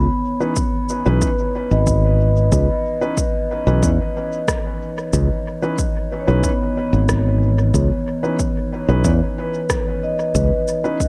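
Hazy and deep, this ambient dub excerpt fades in on a warbling, detuned tape-like pad of dark sustained chords with chorus and its own reverb, while a mellow, ringing soft-mallet vibraphone plays up-front arpeggios through a low-pass filter and dub echo, a growly fingered electric bass sits direct and forward, a woody upright piano drops echoing stabs from 0.4 seconds, and from 0.6 seconds an overdriven, punchy electronic kick joins tape-warm electronic cabasa and rim click steeped in dub echo, all over a C#m9 in a dry, echo-heavy mix.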